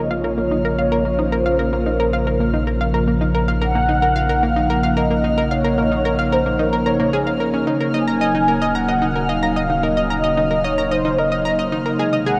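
Ambient, sequencer-driven space music in Bb minor at 111 BPM, this short cut from a longer piece feels expansive and hypnotic, moving from Bbm to Ebm7 at 7.7 s. A mellow, horn-like synth lead carries the melody with a soft attack, vibrato and ensemble chorus, trailed by shimmer reverb and tape echo. Beneath it, a resonant, evolving pad holds sustained chords with a slow filter swell, while a bright, detuned analog pluck plays an up-front riff soaked in chorus, cassette tape character, shimmer and echo. A deep, round analog bass anchors the low end, and a bubbling stepped-filter texture sits in the background on a high F6, its random filter steps glinting through chorus and reverb. The whole recording is bathed in huge, wet ambient reverb and the worn, warbly pitch drift of old cassette tape.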